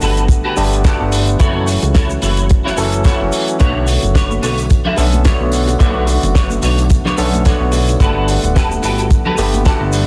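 A barky tine electric piano with analog delay, a twangy, picked clean guitar riff with ensemble chorus and delay, a glossy chorused synth bass and a damped 70s kit with fat snare, hi-hat and shaker open this sleek, cosmic nu-disco excerpt in a swung 16th feel. A tight, dry kick underpins them, and very quiet ringing congas, tambourine and bongos join at 3.6 seconds, all through a heavily compressed radio-style sound in a small room.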